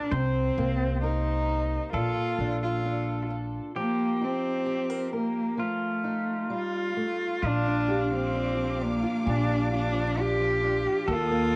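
A dark, bowed cello opens this hopeful, heartfelt acoustic folk-pop ballad, carrying the melody up front with expressive vibrato, soft attacks and gentle portamento, while a fingerpicked steel-string guitar supplies shadowy accompaniment complete with audible finger squeaks. A clean, compressed pedal steel guitar traces a second line above, its slide and volume swells adding a glowing electric shimmer, and a pizzicato upright bass on gut strings joins at 0.1 seconds with a woody, thumpy pulse. The music moves at a slow 66 BPM in a straight 4/4, in Bb major, drifting through Cm7, Bbmaj7, F7sus4 and F7 before resolving to Bb at 7.4 seconds. At that moment a lush symphonic string section enters with sustained chords, and at 7.9 seconds a felt-muted upright piano adds mellow, boxy arpeggios from the background, its action noise lending an intimate touch. Moderate spring reverb gives the performance a soft studio glow, and the passage is cut from a longer piece.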